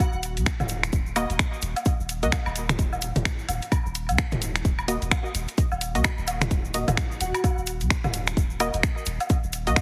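A heavily compressed, radio-like sound with light reverb frames this sparse, clinical minimal techno excerpt, where a punchy, up-front electronic kick, a house kit of finger snaps and bright hats, a grainy cabasa in the background and electronic woodblock and toms with digital delay run from the start, swung on the sixteenths. A deep, mellow sine sub bass with tube saturation and sidechain pumping enters at 0.1 seconds, and a muted, detuned filtered dub chord stab with chorus and delay joins at 1.2 seconds. An airy, dreamy lead with chorus and delay surfaces only in brief touches, most notably around 7.2 seconds.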